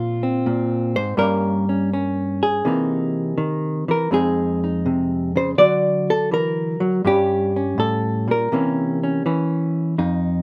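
A clean, dark hollow-body electric jazz guitar plays alone from the first second in this swinging, moody solo jazz excerpt at 82 BPM in 4/4, cut from a longer piece. The fingered, compressed guitar sits up front in a moderate studio reverb, moving through Bb7sus2, Gdim, C7alt, Fm7, D and back to Gdim before closing on C7b9 at 8.5 seconds. Its range spans F2 to D5 over the roughly 10.4-second passage, with a swing feel on the eighth notes.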